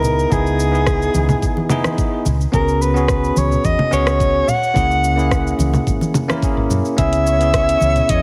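Heavily compressed, radio-like sound in a moderate stage reverb frames this relaxed sunset chillout excerpt, where a breathy, whispered soprano saxophone with vintage sampler grit and delay carries the melody up front over a bell-like tine electric piano moving through a filter sweep, a round, woody fretless bass, a smooth R&B kit of cabasa, congas, rim click and warm hats, background congas and a knocking, tape-tinged electronic kick from 0.3 seconds, before a faint, twinkling granular shimmer arrives at 7.2 seconds.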